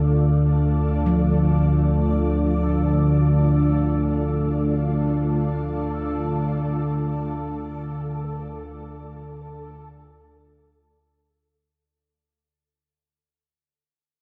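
Drifting in free time, this cavernous, desolate dark ambient drone fragment rests on an up-front, evolving analog drone of sawtooth and pulse waves with chorus, beneath a blurred, detuned granular cloud pad with shimmer reverb and a resonant, bubbling stepped-filter texture that fades in, while soft bronze gamelan-type bossed gongs play arpeggios with tape echo in the background from 1.1 to 6.7 seconds, all set in a vast, echoing space before a fade-out from 6.8 seconds.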